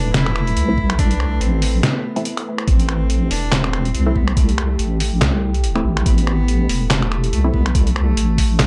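An echo-heavy mix with light reverb opens this brooding, meditative deep dubstep excerpt in A minor, moving at 142 BPM with a half-time, lightly swung feel. A close, reedy bowed cello carries the melody through dub echo over a moody, chorused ambient pad with vintage sampler grit, while a dark, up-front wobble bass with tube saturation holds the low end. A compressed, pitched-down trip hop drum kit of finger snaps, handclaps, hi-hat and snare arrives at 0.1 seconds, a mellow filtered chord stab with phaser and dub echo enters at 0.7 seconds, and a knocking, tape-flavoured electronic kick joins at 0.8 seconds.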